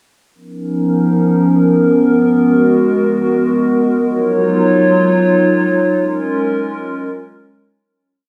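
Hip hop in free time, tuned to A4 = 441 Hz, this hazy, spacious piece is a solo for a warbly, nostalgic, lo-fi tape-like pad playing from 0.6 s to the end, dark and up front with slow attack, long release, chorus and tape echo, moving through C#13, G#m9, D#m9 and A#m7 in a dreamy mix soaked in cathedral reverb before a fade-out from 6.0 s to 7.8 s.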